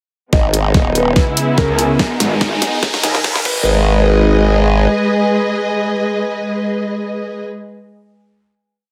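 A swung half-time beat of knocking electronic kick and a tape-warmed dubstep kit with huge snare, bright hats and crash drives this chaotic, menacing heavy wobble dubstep piece through a build to 3.7 seconds, as an overdriven formant-sweep wobble bass and an aggressive metallic FM wobble bass, which answers it, sit up front beneath intimate sul tasto strings pumping with the sidechain, a dark, mellow grand piano repeating a filtered riff in the background, a warbling lo-fi tape-like pad and a background electronic riser, before strings, piano and pad ring out in a dreamy, reverb-soaked final note that the pad carries alone to 7.8 seconds.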